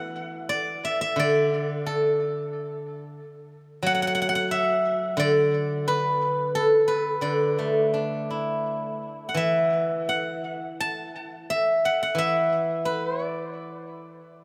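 Chinese traditional solo plucked strings in a pastoral, flowing mood, this excerpt features a bright, silvery steel-string zither played with fingerpicks, up front and ringing through tape echo from D3 to A5 in D gong mode at a rubato 88 BPM in 4/4, set in a moderate concert hall reverb over its 14.4 seconds.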